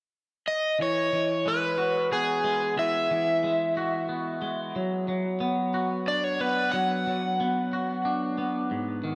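A bright, overdriven stack guitar carries a soaring melody from 0.5 seconds over a clean, twangy electric guitar whose picked arpeggios drift slightly in pitch, both up front and trailed by analog delay, moving from Eadd9 to Bm/F# in a hopeful rock excerpt in 6/8 bathed in a dreamy plate reverb.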